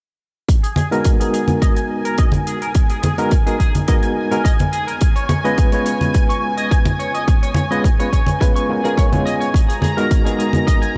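A lush, detuned sawtooth pad with chorus and sidechain pumping opens this groovy, sensual nu-disco excerpt at 0.5 s, joined at once by a punchy, layered electronic kick sitting up front and an airy, polished hi-hat. An electric guitar at the edge of break-up plays a twangy, picked riff through lush chorus, a low-pass filter and tape echo. Bright, compressed congas struck with hard hands come in at 0.8 s. At 0.9 s an overdriven reed electric piano, barky and gritty through a combo amp with fast tremolo and tape echo, takes up the accompaniment up front, with a filter sweep running across it for the whole passage. The harmony moves from G#m9 to C#7 and back to G#m9, and a huge ambient reverb bathes the mix in a dreamy wash.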